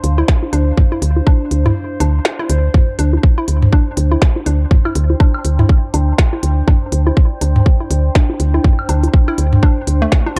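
A woody, round FM bass sits up front on a low D, pumping against the sidechain, while a minimal click drum kit of clicky hats and a tiny, overdriven snare ticks through tape echo, all from the very start of this hypnotic, cool minimal techno excerpt at 122 BPM in D minor. A warbling, nostalgic pad hovers beneath on a Dm7 chord, its lo-fi sawtooth tone softened by chorus, phaser and built-in reverb and breathing with the same pumping. At 0.2 seconds a hollow, bouncy square-wave pluck enters with a detuned, wave-folded edge, its short riff carried by chorus and analog delay. A tight, layered electronic kick lands up front at 0.3 seconds, and electronic bongos, toms and woodblock follow at 0.4 seconds, sounding as if heard in a large room. The 16ths swing at 59%, a brief break falls between 1.8 and 2.7 seconds, and the whole sits in an echo-heavy digital ambience.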